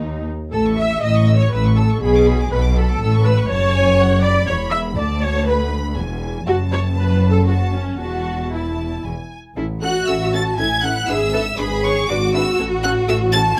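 A spirited, cheerful classical-period movement for string orchestra in a flexible, rubato triple metre, with a focused first violin section carrying the melody over a smooth second violin line, even viola accompaniment, a close cello bass and an expressive, up-front double bass section, all bowed with vibrato and caught by close, detailed microphones in a dry, lush sound.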